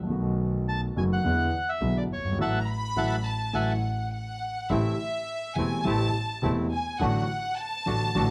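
Playful and elegant, this short tango excerpt moves with a rubato feel in 4/4, cut from a longer piece. A concert grand piano with a deep bass end accompanies throughout, joined by a clear, bowed double bass, a single player with smooth, even vibrato. A reedy, vintage-toned bandoneon sits up front with the melody from 0.7 to 3.7 seconds, its sound slightly band-limited, while the whole band lands an accent from 2.4 seconds and a studio violin section slips in at 2.6 seconds as a second line. From 4.7 seconds the violins take the solo, bowed with a smooth top and even vibrato, as a darker bandoneon adds short stabs beneath them over a shift to A minor. The close, detailed sound carries a light reverb, and the chords travel from B7 and E7 toward Am and D/A.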